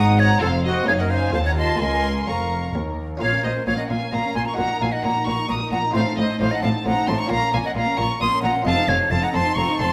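In a straight 3/4 at 132 BPM, this dramatic, driving baroque-style concerto movement in Bb minor, cut from a longer piece, sets an airy, bright silver flute melody beside a rich, focused violin section carrying the upper line, with a second violin line, a muted, lute-like buff-stop harpsichord and a lush viola section accompanying in the background, while expressive cello and double bass sections with portamento anchor the bass in a moderate recital-hall reverb.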